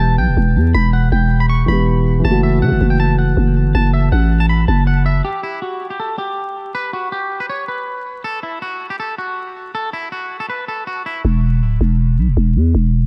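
Dark, warm production with vinyl crackle and small-room ambience frames this melancholic, hard-hitting trap excerpt at 160 BPM, set in a half-time 4/4 feel that moves from Em to F#m7. A clean, twangy, fingered electric guitar carries the melody through spring reverb, delay and a low-pass filter, over a mellow, long-sustaining baby grand piano and a growling, buzzy 808-style bass whose fast attack sits up front. The guitar plays alone from 5.3 seconds, and the bass returns at 11.2 seconds under an E5 chord.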